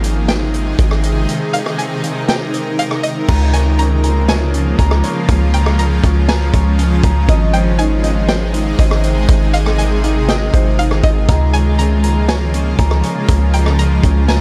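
A shimmering, ethereal ambient pad with chorus, reverb and sidechain pumping sits up front across this blissful, floating cloud-rap hip hop excerpt at 120 BPM in a half-time feel, moving between Ab and Db6 over a deep, mellow 808-style sine bass and a vintage acoustic drum kit of punchy kick, snare, rim click, hi-hat and dark crash (its kick muted from 1.3 to 3.3 seconds), while a twangy, string-like resonator pluck with tape echo plays the melody in the background and a ringing concert harp joins with arpeggios at 3.3 seconds, all in light studio ambience.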